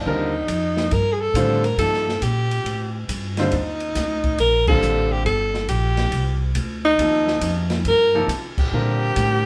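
A moderate studio reverb places the band together in one room for this hypnotic, searching modal jazz excerpt in Eb lydian, swinging at 138 BPM in 4/4 over a single Ebmaj7 chord and tuned slightly low to A4 = 438 Hz. Up front, a breathy alto saxophone carries the solo melody with subtone, vibrato and scooped notes, supported by a brilliant, vintage-toned grand piano and a woody, pizzicato upright bass. From 0.5 seconds an acoustic drum kit adds its dark cymbals, medium-tuned snare and boomy kick, and the full band hits accents at 4.6 and 8.5 seconds.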